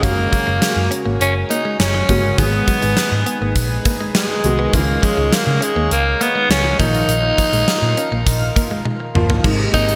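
1980s-style pop at 102 BPM in a straight 4/4, this urgent, dramatic fragment is cut from a longer piece and moves through Gbadd9, Abm, Dbadd9 and Bbsus4 before landing on Abadd9 at 9.4 seconds. Up front, a breathy, raspy tenor saxophone carries the melody with a delay, its gritty vintage tone sitting over a round, dark hollow-body short-scale bass picked through an amp. A punchy gated drum kit with bright cymbals and a medium-tuned snare drives the groove in a stone-like room, closing with a drum fill from 8.9 to 9.4 seconds. An intimate concert grand piano with audible action noise and deep bass supplies accompaniment through an analog chorus. A twangy, compressed clean electric guitar, recorded direct with subtle chorus, plays a riff in the background from 0.2 seconds, while a shimmering pulse-width pad holds soft-attack chords beneath. A lush hall reverb and polished digital sheen frame the whole mix.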